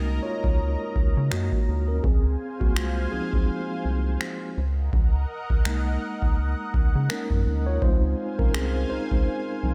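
A mellow tine electric piano carries the lead throughout this tender, smooth contemporary R&B excerpt at 83 BPM in 4/4 with a 16th-note swing, drifting between Gb6 and Dbmaj7 chords. Beneath it a rubbery, hollow square bass and a lush, detuned unison pad with chorus and phaser fill out the harmony, while a booming analog drum machine with a deep kick and finger snaps enters at 0.4 seconds, sitting up front with the sound of a large room. The overall mix is dry and intimate, with the drums leading the balance and the pad tucked softly behind.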